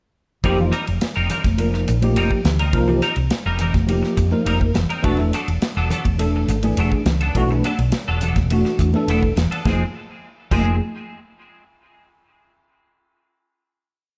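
A straight 4/4 groove drives this short, intense and slick piece of electric jazz fusion, where a woody, round fretless bass sits up front with a syncopated riff while a dark, smooth studio drum kit with a tight kick and medium-tuned snare plays a fusion ride pattern and high, thin-skinned congas add a loose pattern in the background. A bell-like tine electric piano plays funk chord rhythms in quartal voicings through ensemble chorus, and a twangy, compressed clean guitar adds funk-strummed upper chord shapes with chorus and tape echo. The sus-chord groove moves down a half step at 5.0 seconds before everything settles on a final minor chord at 9.7 seconds, all in a lightly reverberant space.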